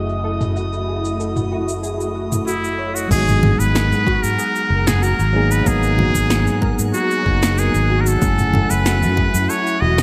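A wistful sunset chillout passage at 94 BPM opens on a mellow tine electric piano, silky string machine with phaser and ensemble chorus, a round, dark pluck in chorused, delayed arpeggios under a filter sweep, a growly fingered electric bass and a drifting glassy texture in the background, with a punchy, overdriven deep house drum kit of crash, shaker, snare and toms entering at 0.1 seconds, a nasal muted trumpet with vibrato and scooped jazz notes taking the delayed lead up front from 2.5 seconds, and a deep overdriven electronic kick with quiet, close congas joining at 3.1 seconds as the F#m9 harmony moves to G#m9, all in a bright, lightly reverberant 1980s-style digital production.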